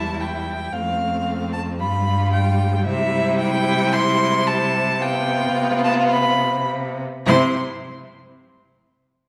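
A rich, focused first violin with vibrato carries the high melody up front in this graceful, lively classical-period string quartet movement at a quick 110 BPM in 4/4 with rubato, over a warm second violin's expressive line with portamento, a close, soft-attacked viola accompaniment and a clear, smooth cello bass, the four players bowing together from the start until 7.6 s through Em, F, G7 and C harmonies in a reverberant hall, in a passage cut from a longer piece.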